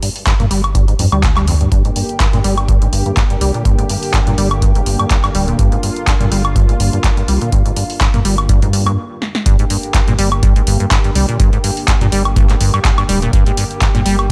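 Set in a digital ambience, this trippy, gritty acid house cut from a longer piece moves at 124 BPM in 4/4 with a light swing on the sixteenths, sitting in G phrygian over a G minor chord. A squelchy, resonant sawtooth acid bass riff runs from the start, thickened by tube saturation, analog chorus and digital delay, and pumped by the sidechain while a filter sweep works across its line through the first section. A punchy, tape-toned analog drum machine supplies handclaps, hi-hat, a punchy snare and woodblock with a short room on the snare, clap and hats, joined by a deep electronic kick, the loudest part, from 0.3 seconds. Beneath it, a round, dark analog bass of detuned sawtooth, sine and triangle waves holds the low end with tube grit and sidechain pumping. From 1.7 seconds, a lush, airy unison pad of detuned sawtooth and square waves with a noise layer spreads soft-attack chords under chorus, breathing with the pump. 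A brief stop and a drum fill near 9 seconds set up the drop at 9.5 seconds, where the second section opens.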